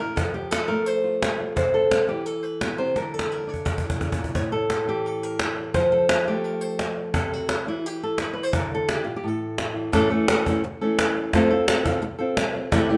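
Fiery yet mournful, this flamenco excerpt from a longer piece sets a fingerpicked acoustic flamenco guitar carrying the melody against a woody cajon with faint snares, both placed up front in a stone room with moderate reverb. The cajon plays a fill from 3.0 to 4.4 seconds, while the harmony moves through F, C6, Dsus2 and A5. At 9.9 seconds a new section opens on an A chord before returning to F.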